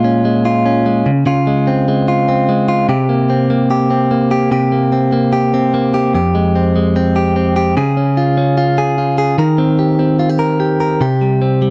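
Indie pop in F minor at 148 BPM in a straight 4/4, this short cut from a longer piece carries a restless, bittersweet mood on a lone clean electric guitar, recorded direct, picked and compressed, sitting up front with a touch of spring reverb. It moves through Bbm7, Dbmaj7 and C5 before shifting at 6.1 seconds to a new passage of Fmadd9, Db and Eb6, landing back on C5 at 11.0 seconds. The sound is dry and close, with the feel of a 1970s-style studio and only a light room reverb around it.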